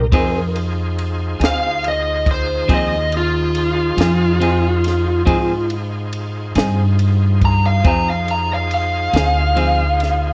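Moving in a slow 12/8 at 46 BPM, this soulful, brooding blues fragment sits on an Fm7 chord as a dark, smooth overdriven lead guitar solos up front across the full 10.3 seconds. A woody, growly pizzicato upright bass and a dry compact cocktail kit with punchy kick, high-tuned snare and dusky ride support it. A clean picked electric guitar with tremolo accompanies, while a bright, shouting tonewheel organ holds sustained chords; the organ carries key click, light overdrive, chorus vibrato and a slow rotary speaker. Light reverb and worn, warbling cassette tape with drifting pitch give the sound an aged character.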